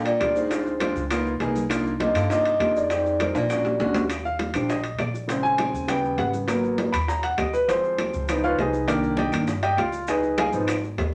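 An excerpt of sophisticated, danceable Afro-Cuban jazz opens with a dark, mellow vibraphone melody shadowed by a soft-attacked baritone saxophone line with vibrato, over a clear, vintage-toned grand piano, a woody pizzicato upright bass, and a percussion bed of ringing metal-shell timbales, round low-tuned bongos, ringing congas, distant claves and grainy maracas. After a drum fill from 3.3 seconds, the vibraphone and saxophone drop out at 3.9 seconds, and the up-front piano takes a solo from 4.1 seconds over richly extended, altered chords. The whole is set in a wet studio reverb.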